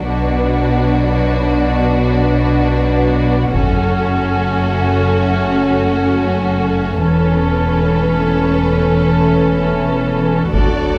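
In free time, this cut from a longer cinematic, epic orchestral film score builds over 11 seconds, carrying a relentless, dark mood through a Bm, F#m and Aadd9/E progression. A dark, expressive violin section sits in the background with the melody, while a second violin section adds a focused, smooth-topped second line beneath it. A warm viola section fills out the accompaniment, and a mellow, distant French horn section holds sustained chords behind the strings. Underneath, rich cello and double bass sections bowed with vibrato form a lush bass. A distant taiko ensemble struck with heavy sticks booms in a large room at 3.5 seconds and again at 10.5 seconds, all within a moderate scoring-stage reverb.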